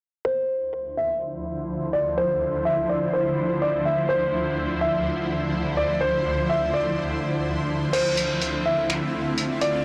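A felt-muted upright piano carries a soft, intimate melody from the start of this melancholic, spacious cloud-rap excerpt in a half-time feel, joined at 0.9 seconds by a shimmering, detuned ambient pad of sustained chords bathed in chorus and reverb, while a filter sweep runs through the opening section until a gritty, pitched-down sampler-style drum kit of crash cymbal, finger snaps and hi-hat enters at 7.9 seconds, all within a blown-out, overdriven recording with light reverb.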